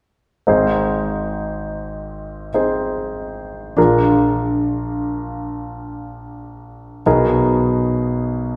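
A slow, straight 4/4 pulse at 73 BPM carries this tender, emotional pop fragment, cut from a longer piece, where a concert grand piano plays accompaniment from 0.5 to 8.6 seconds, moving from Ab to Bb7 and settling on Abmadd9/Cb. The piano sounds intimate and polished, sitting up front with deep bass, short sustain and audible action noise. A wet recital-hall reverb gives it the air of a church or concert hall.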